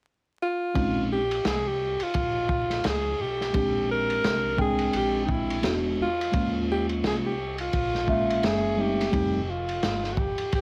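A breathy, close-miked alto saxophone opens this cool, mellow jazz-hop excerpt at 0.4 s, carrying an up-front solo melody as a mellow tine electric piano slips in beneath it with clean chords through its built-in speakers. At 0.8 s a crunchy breakbeat kit with dark cymbals, a tight kick and gritty 12-bit sampler saturation arrives together with a woody pizzicato upright bass over a swung groove, moving through jazzy extended chords such as Bbm11, E9 and Gb9. The tape-coloured sound sits in light reverb with vinyl crackle, and the piano drops out at 9.4 s while the horn, bass and drums carry on.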